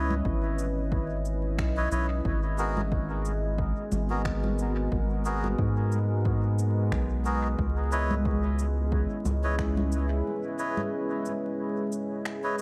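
A deep, moody pad sits up front, its slow-attack sawtooth chords thickened with chorus and soaked in their own reverb, moving from C#m9 to G#m9 and back to C#m9 in this spacious ambient dub fragment cut from a longer piece. Beneath it, a soft, round sub bass, also up front, holds sustained low notes with a fast attack. A reedy, nasal melodica punctuates the harmony with close-miked stabs that trail off into dub echo. Electronic congas, cabasa and finger snaps tick along with a gentle 16th-note swing at 90 BPM, their echoes drifting through the mix, while a punchy, overdriven electronic kick pulses in the background until 9.7 s. At 10.3 s the music opens into a break, with the sub bass gone, leaving pad, melodica and percussion floating in a dreamy haze of plate reverb and vinyl crackle.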